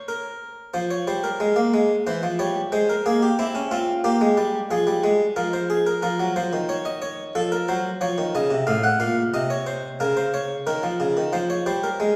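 The recording sits in a recital hall with a long, wet reverb of about 1.8 seconds, yet the close-miked harpsichord stays up front, its single set of strings sounding round, full and plucked. This is a serious, solemn classical piece in baroque style, a two-part invention played on a solo Italian-style harpsichord at 91 BPM in a straight 4/4, tuned to A4 = 439 Hz. The instrument enters at 0.1 seconds and spans from A2 up to Gb5, with the two voices carrying the whole texture alone. The harmony moves from Fm through C/E and C7 back to Fm, then on to Bbm, F, F7/A and Bbm/Db before settling again on Fm. The passage is cut from a longer work and breaks off at 12.2 seconds.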